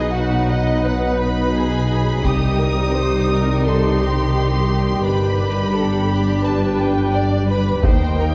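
A lush bowed string orchestra opens this relentless, heroic excerpt of an epic cinematic score at 86 BPM in C dorian, with a distant violin melody above a close second violin line, focused violas, dark woody cellos and smooth double basses over mellow background French horn chords, while hard-stick taiko drums strike in at 2.2 s and again at 7.8 s, all in a moderate concert hall on worn, warbling old cassette tape with drifting pitch.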